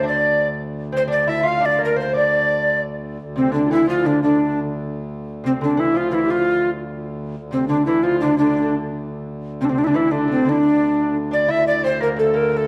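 This mysterious, driving medieval dance in D minor opens with all four parts sounding at once. Up front, a breathy, mellow tenor recorder carries the melody over a second line from a bright, reedy bass recorder, a delicate fingerpicked lute and a low D drone on a hand-pumped harmonium. The tune moves at 115 beats per minute, counted in dotted quarters, in a straight 6/8. The tenor recorder's wooden tone has vibrato, tongued chiff, rolled-off highs and a slightly unsteady quality, while the bass recorder sounds pure, with its own tongued attacks and wavering tone. Beneath them, the lute's doubled gut strings, some strung in octaves, ring softly, and the harmonium's nasal drone seems to breathe within a boxy small room. The whole is bathed in a dark production with lush scoring-stage reverb, and the music shifts to new sections at 3.2 and 11.5 seconds in this excerpt from a longer piece.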